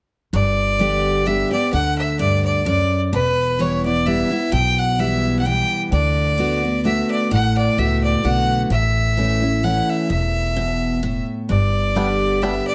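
This lively, virtuosic bluegrass excerpt opens at 0.3 seconds with a clear, biting fiddle carrying the melody up front, its bowed line touched by light vibrato, an airy bow and a slapback echo. Beside it, a bright, full-bodied picked dreadnought guitar supplies accompaniment, also up front in the mix, while a woody, thumpy upright bass plucks a dark low line beneath. The tune moves at 129 BPM in 3/4 with a swung eighth-note feel, passing through G, Em, D6 and A before returning to G. Near the close, at 12.0 seconds, a twangy, percussive banjo played with fingerpicks slips in briefly with its own slapback echo, sitting lower in the mix. Light reverb gives the intense, one-player fiddle and its companions a sense of shared space.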